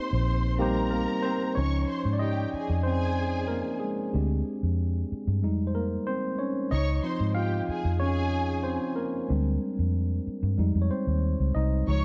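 Soul in a silky, bittersweet mood, this excerpt from a longer piece sets a worn, slightly out-of-tune tine electric piano up front, taking a solo from 1.6 seconds over chords moving through Dbmaj9, Fm9 and Bb13/D. A round, foam-muted fingered electric bass sits close and dark beneath it, while a distant, lush violin section adds a second line with vibrato and portamento. Light reverb and small room ambience give the production a dark, warm feel.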